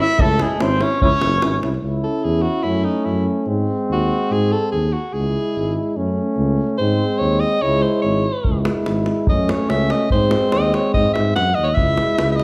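A steady 2/4 pulse at 145 BPM with a straight feel sets this fiery, bittersweet Balkan brass band piece in motion, cut from a longer performance in C# harmonic minor. A mellow, distant trumpet carries the melody up front with light vibrato until 1.6 seconds, while a deep davul beats beneath the opening phrase. From 1.8 seconds the bright, breathy alto saxophone takes a solo for the rest of the clip, its pop-style vibrato standing out against the classical poise of the other horns. A punchy trombone and a warm euphonium fill in the accompaniment, and a soft-attack tuba anchors the bass with light vibrato. The davul returns at 8.4 seconds as the harmony cycles through C#m, F#m and G#, all set in a moderate recital hall reverb.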